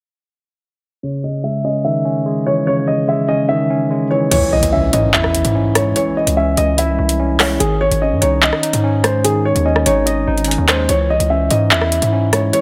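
Cold and menacing, this half-time drill excerpt opens with a dark, intimate baby grand piano melody carrying audible action noise through low-pass filtering and tape echo over a bright, clean tine electric piano under a filter sweep, until at 4.3 seconds a background impact lands as a saturated, heavy distorted 808-style bass and an up-front electronic drill kit of metallic hi-hats, handclaps, rim clicks and crash cymbal enter, all in a light reverb.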